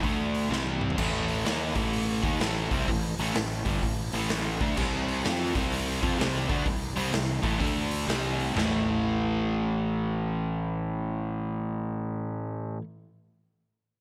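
Blues rock in the power-trio mold with a southern rock streak, this brooding, heavy clip moves at 127 BPM in 4/4 with a swung eighth-note feel, centered on A minor. A crunchy, double-tracked overdriven guitar carries the riff up front, picked from G2 to F4 over shifting power chords and an A minor. Beneath it, a fuzz-soaked fingered electric bass growls, bright and overdriven, from G1 to F2. A raw garage drum kit, gritty and saturated with a punchy kick, medium-tuned snare, hi-hat, toms and crash, sits up front in a pumping stone room, opening with a fill between 0.5 and 1.0 seconds before dropping out at 8.7 seconds as the second section begins. The whole mix is bathed in a lush hall reverb for a big arena sound, and the clip is cut from a longer piece.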